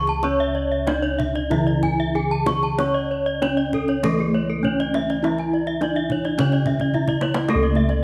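Balinese gamelan with a shimmering, brilliant mood, heard as a brief fragment of a longer piece: a full, close-miked bronze metallophone carries the melody under a wooden mallet, while a second metallophone plays accompaniment and two bright, horn-struck metallophones spin arpeggios whose paired tuning gives off beating shimmer. Round, warm bossed gongs hold the bass up front with a boxy small-room colour, and a tight, band-limited kendang struck with hard hands adds vintage-sounding percussion, breaking into a drum fill from 6.8 to 7.5 seconds. The detailed close microphones sit within a moderate recital hall reverb that lets the ringing bronze bloom.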